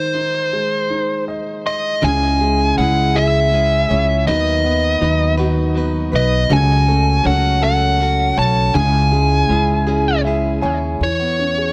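A dark, overdriven lead guitar carries the melody up front with delay in this aching, melancholic six-eight pop ballad in C# minor, moving at a slow 53 BPM. An intimate concert grand piano with deep bass and audible action noise accompanies throughout and adds fills at 0.9 and 9.9 seconds. At 2.0 seconds a woody, growly pizzicato upright bass and a compressed, direct-recorded clean electric guitar playing picked arpeggios join in, all within a studio ambience.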